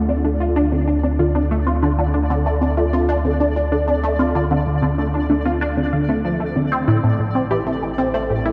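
A squelchy, resonant blip pluck carries the riff up front in this expansive, hypnotic stretch of sequencer-driven space music in D minor at 95 BPM, joined by warbling, lo-fi pluck arpeggios, a deep, round sub bass and a pulsing gated texture that fades in from 0.0 s, all set in a vast cathedral reverb as Dm7 gives way to Am at 6.9 s in this short cut from a longer piece.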